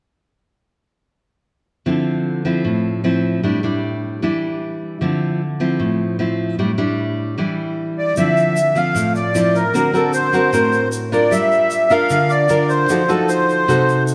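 A straight 4/4 bossa nova pulse at 152 BPM in D minor carries this intimate, smooth fragment, cut from a longer piece. The fingerpicked nylon-string guitar opens alone at 1.9 seconds, classical in tone and up front, with audible finger squeak as it moves between Dm9 and A7sus4. At 8.0 seconds a reedy accordion takes the melody, sweet yet dark, its light tremolo tuning lending a gentle shimmer, while a grainy, bright egg shaker slips in just after. The second section shifts the harmony through Dm9, D7b13, Gm7 and F7b9. A wet echo chamber reverb places the listener further back in the room, giving the close, acoustic instruments a soft halo.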